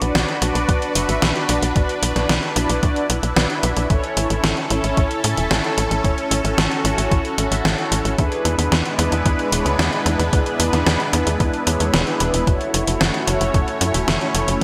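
Synthwave at 112 BPM in a straight 4/4, this moody, driving passage is cut from a longer piece and moves through Bm, A, E7 and F#m7. A tight, punchy sequencer bass sits up front with a nasal, evolving sawtooth-and-square tone and a plucky filtered attack that decays quickly. Above it, a lush unison pad of detuned saws with a sub octave holds sustained chords, colored by chorus and phaser and pumping against a sidechain. Mellow synth brass adds brassy, round stabs with a darker, ring-modulated edge, a filter sweep, chorus and delay. The gated 1980s digital drum machine carries hi-hat and a snare drenched in gated reverb, overdriven and placed up front, while a thumpy, overdriven electronic kick joins at 0.7 seconds. A moderate digital hall reverb and bright 1980s-style production frame the whole mix.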